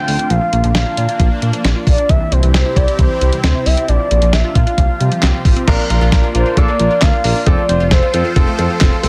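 This bright, nostalgic synth-pop excerpt opens at 0.0 seconds on a mellow, horn-like synth lead carrying the melody, with soft attacks, vibrato, portamento and a filter sweep, set in chorus and digital delay. Beneath it, a lush, thick unison pad holds sustained chords from a detuned sub-octave blend treated with chorus and phaser. An analog pluck with a round, decaying tone spins arpeggios, and both pad and pluck sit in the background. Up front, a smooth sawtooth-and-triangle bass with a ring-modulated edge joins a clean 12-bit drum machine whose thumpy kick, fat snare, hi-hat, handclaps and crash cymbal drive a straight 4/4 pulse. The harmony moves through Bb, C and Csus4, and at 5.7 seconds a clear, polished baby grand piano enters with accompaniment as the chords shift to Bb and F. The lead stops at 8.3 seconds, and the whole is dressed in light reverb with a dense, heavily limited modern master.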